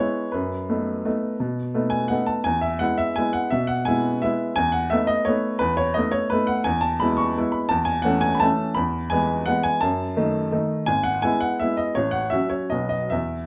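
A bright, woody upright piano plays alone and up front through a sparkling, graceful classical waltz in E major, moving in a rubato 3/4 at 145-184 BPM across a range from G#1 to C#6, with harmony that leans from B7 back to E before touching A, D#dim and F#m and coming to rest on B at 12.7 seconds, all heard close and in fine detail within a moderate studio reverb in this 13.5-second cut from a longer piece.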